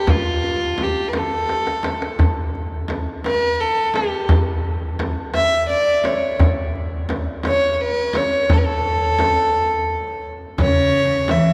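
A dark, sul tasto violin floats up front over a deep frame drum and a warm, hard-handed tombak in the background in this passionate, festive Persian modal piece in dastgah homayun on A, moving in a straight 6/8 at 57 BPM through the lingering wash of a cathedral reverb, with a drum fill at 1.5 seconds, a break at 9.5 seconds, and a rich, vibrato-laden cello entering at 10.6 seconds as this cut from a longer piece closes.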